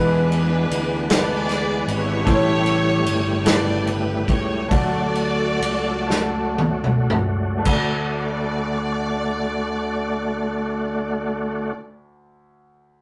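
Uplifting and hopeful, this slow gospel fragment in 6/8 sets a distant, lush string section on the melody over a polished baby grand piano, a thick, lightly overdriven tonewheel organ up front holding sustained chords through a fast rotary speaker and chorus vibrato, and a growly fingered electric bass. A natural country drum kit with dark cymbals and a punchy kick joins at 0.3 s, the performance slows from 2.3 s, and a drum fill carries into the closing D chord, with the piano ringing on alone after the others stop at 11.7 s. The rough rehearsal-room recording is bathed in wet reverb.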